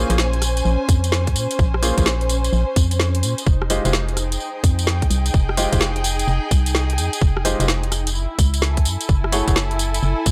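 Moody and late-night, this short cut from a longer piece is two-step UK garage at 128 BPM in Bb minor, its sixteenths swung at 65%. A hollow, organ-like FM bass with a fast, decaying attack sits dark and up front from the opening, while a bright baby grand piano fires off short stabs through an analog delay, its worn, intimate tone carrying audible action noise until it drops out at 9.5 seconds. Underneath, a muted string section bowed con sordino lays a veiled texture with vibrato and a smooth top, breathing with sidechain pumping. The garage kit brings woody snare, metallic hats, rim clicks and tambourine in a studio reverb, and a tight, layered electronic kick lands up front from 0.9 seconds. The harmony moves from Bbm9 to Fm9 and then Gbm9, all framed by a dry, gritty hardware sound in a digital ambience.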